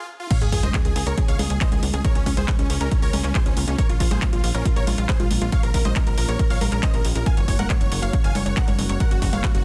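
A huge, detuned supersaw lead carries the melody of this soaring, euphoric uplifting trance excerpt at 138 BPM, sounding from 0.0 s just before the drop at 0.3 s brings in a punchy layered kick, a techno kit of congas, crash, handclaps and metallic hats, and, moments later, a tight sawtooth sequencer bass, over chords moving from Db6 to Bbm to Gb. A lush, bright unison pluck plays a second line in the background, sharing the lead's delay and sidechain pumping, while a silky, string-like analog pad sustains beneath and a very quiet sub drop marks the impact until 2.0 s. The master is dense and heavily limited with little reverb, and the kick and bass sit up front.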